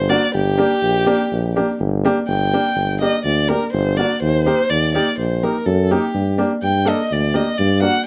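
A dark, woody violin with vibrato, portamento and sul tasto bowing sits up front and takes a solo from 2.3 s in this bittersweet, soulful klezmer fragment at 124 BPM in G harmonic minor, moving from G minor to E-flat at 4.2 s and back at 6.1 s, over a smooth-topped tuba bass with light vibrato and scooped notes and a clear, intimate upright piano whose short sustain and audible action noise come through a moderate studio reverb.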